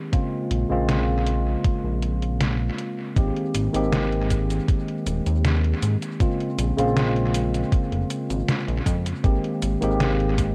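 Nostalgic and woozy, this vaporwave excerpt drifts through lazy chords under a light reverb and an echo-heavy, cassette-tape haze. A bright, clean tine electric piano sits up front with analog chorus and dub echo, joined at 0.1 seconds by a thumpy, overdriven electronic kick and a detuned 8-bit drum machine with cabasa, hi-hat and a medium-tuned snare, while a glossy, mellow chorused synth bass with tube saturation and a filter sweep enters at 0.5 seconds. The kick drops out briefly from 2.4 to 3.2 seconds, just before the harmony settles into a new section.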